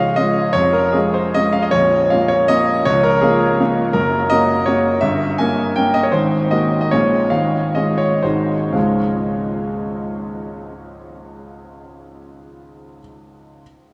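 Dotted rhythms drive this romantic classical dance in 3/4, with a free, rubato pulse that ranges from 109 to 176 BPM and a proud, rustic mood. A solo grand piano carries everything in D-flat major, reaching from deep Bb0 bass notes up to Ab5. The piano sounds clear, intimate and natural, placed up front, and the action noise of the instrument is audible. The harmony moves from Db through Bbm and Gb to a Gdim7 and an Ab9, and the playing slows from 5.6 to 8.8 seconds before settling back on Db as a new section begins at 8.8 seconds. A huge, wet reverb with a 7.8-second tail places the piano in a vast, echoing space, and this brief fragment is cut from a longer piece.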